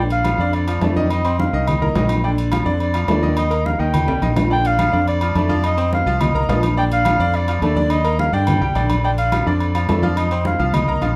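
A round, punchy fingered electric bass sits up front in this joyful, sunny salsa excerpt at 212 BPM in Bb major, anchoring a mellow, classical-style clarinet melody and a bright, intimate grand piano whose action noise is audible and whose notes decay quickly. Ringing agogo bells with metal-shelled timbales and medium-tuned congas played with soft hands join at 0.1 seconds, and a drum fill at 4.1 seconds leads into a repeat of the opening phrase. The band plays live in one large studio room with moderate reverb, moving through Bbmaj7, F7sus4 and Eb chords.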